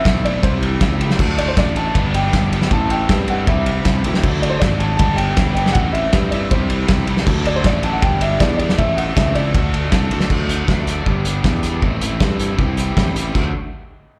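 A loose, straight 4/4 beat at 158 BPM drives this upbeat, carefree indie rock excerpt in D mixolydian, with a punchy kick, medium-tuned snare, dark cymbals and a pumping room sound placed up front alongside a picked electric bass that stays low and warm. Two overdriven electric guitars play riffs throughout: one bright and touched by spring reverb and slapback echo, the other compressed and set in the background with analog chorus and delay. A dark, woody upright piano with short sustain carries the melody until 9.9 seconds, its notes given a slapback echo, while a soft, flute-like tonewheel organ with slow rotary vibrato holds barely audible chords beneath until 10.3 seconds. The harmony cycles through Cmaj7, Dadd9, Gadd9 and Amadd9 before settling into plainer D, G and Am chords as the guitars, bass and drums carry on alone. The whole band is heard through a club PA in a small room, giving it a live gig feel in a fragment cut from a longer piece.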